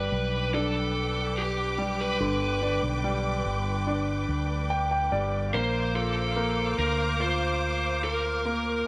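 Heard all together from the start at 72 BPM, this emotional, heartfelt pop excerpt sets a dark, overdriven picked lead guitar melody over a clear concert grand piano with audible action noise, a round fretless electric bass with analog chorus, and lush, bowed studio strings holding sustained chords, with a piano fill from 4.3 to 5.5 seconds as the harmony shifts from G to Bbadd9 at 5.5 seconds, all inside a moderate echo chamber reverb.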